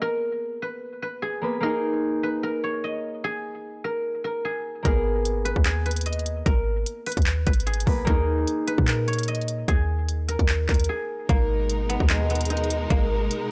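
At 149 BPM in 4/4 with a half-time feel, this menacing, eerie trap cut, taken from a longer piece, sits in G# minor and moves between G#madd9 and D#sus4. A silvery, ringing guzheng, played with fingerpicks and placed up front, carries the melody throughout, softened by a low-pass filter and trailed by analog delay. A fingerpicked concert harp supports it with ringing acoustic accompaniment, also low-pass filtered. At 4.8 seconds the trap drum kit arrives with a hard-clipped kick, crisp hi-hats and handclaps, joined by a deep, boomy, clean 808-style bass with a sine tone, fast attack and mellow decay. After a short break at 10.9 seconds, the harp drops out, and at 11.3 seconds a lush, bowed studio string section enters with expressive vibrato and a smooth top, holding sustained chords. The whole recording has a dry, gritty hardware character with small room ambience.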